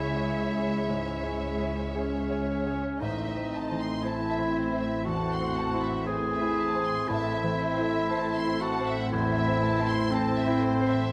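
Hopeful and uplifting, this short cinematic passage in a slow, rubato 4/4 moves from C# minor to A minor as muted violins carry a veiled melody while a clear, up-front clarinet and a second muted violin line join a polished baby grand piano in the background. Dark, con sordino violas, cellos and double basses lay a bowed foundation, softly colored by a very quiet French horn section holding sustained chords and a mellow, ringing concert harp playing arpeggios. Close, detailed microphones and light reverb keep the ensemble intimate.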